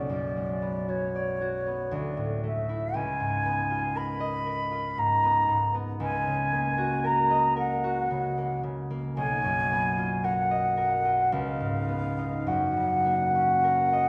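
A flute and harp begin together in this short fragment of a classical, impressionist duo, which moves at a slow, rubato 51-60 BPM in 3/4 and sits in F# major. The concert flute carries the melody between C#5 and B5 with an airy, straight tone and a soft attack, giving the line a dreamy, pastoral feel. Beneath it, the concert harp plays the accompaniment from B1 up to D#5, its fingerpicked strings bright and ringing, and it sits a little lower in level than the flute. The harmony drifts through colourful chords such as Bm6, C#13 and Bmaj7#11 before settling on F#6 at 12.5 seconds. A moderate recital hall reverb surrounds the pair, and lossy compression artefacts can be heard before the fragment ends at 14.1 seconds.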